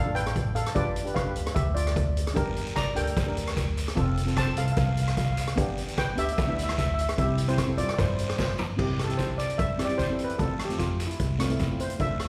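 A straight 4/4 calypso groove at 150 BPM in C major sets a sunny, festive mood, carried by a street-band drum kit with a boomy kick, medium-tuned snare and dark cymbals, and a woody, thumpy pizzicato upright bass on gut strings. A close-miked, dry double-seconds steel pan struck with medium rubber sticks plays the shimmering lead up front, while a second, mellow and smooth steel pan on soft sticks adds metallic accompaniment beneath it, and a raspy guiro joins at 2.4 seconds. After a drum fill at 8.4 seconds the lead pan takes a solo from 8.8 seconds to the end of this cut from a longer piece, all set in a reverberant scoring stage heard from further back in the room.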